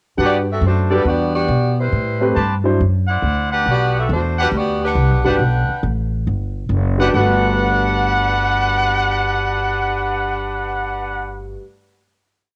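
Energetic, brassy jazz swings at 138 BPM in G major, with a saxophone section carrying a hook-based melody in four-part block harmony, gently vibrato-tinged and soft-edged, until 5.9 seconds, while a clear trumpet section punches syncopated drop-2 stabs bathed in plate reverb. A deep-toned concert grand piano comps in syncopated drop-2 voicings over a woody, thumpy pizzicato upright bass walking on gut strings through a Gmaj7, Em9, Am9, D9 progression. The whole short piece has the soft, aged sheen of a home cassette recording in a lightly reverberant room, closing on a final chord from 7.1 seconds.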